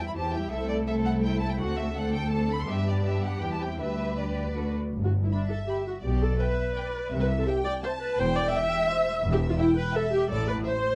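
Spirited and graceful, this brisk classical-period movement for string orchestra moves in a lilting triple metre with a flexible, rubato feel, and it is cut from a longer piece. The first violins carry the melody high in their range with an expressive, vibrato-rich tone, while the second violins trace a focused, lush second line beneath them. The violas supply the accompaniment with a smooth, even sound that sits up front in the mix. Cellos and double basses share the bass, the basses deep and prominent and the cellos resonant and full. The harmony moves through minor and dominant colours before settling on the home chord at 2.7 seconds, and a new passage begins at 4.9 seconds. Light reverb and a dark, warm production round out the ensemble's sound.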